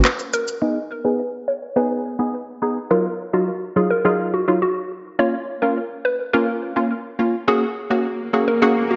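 An electronic afro-pop kit of handclaps, smooth hi-hat, rim click and shaker joins a punchy, detuned sawtooth chord stab at the start of this hypnotic, sultry dancehall excerpt in a straight 4/4, but the kit plays only for a brief break before it stops at 0.6 s. From there the stab, with chorus and a low-pass filter, cycles through Abm, Ebmadd9, Bbm and Gb under a filter sweep, while a hollow, bouncy square-wave pluck, in since 0.3 s, carries the melody with chorus and analog delay. An electronic swell enters at 8.0 s, and the whole dreamy mix is soaked in a wet plate reverb with a soft, dark top end.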